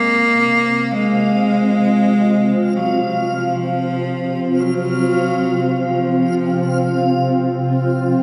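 Ambient music in free time and F minor, dark and desolate, drifting in an echo-heavy chamber reverb. Up front, a bright, biting solo cello with light vibrato and an airy bow carries the melody through tape echo until 7.6 seconds. Beneath it sit a blurred, cloudy granular pad holding sustained chords, a mellow, warbling analog drone on C3 with chorus that fades in throughout, and, from 0.8 seconds, a reversed, dreamy texture high above.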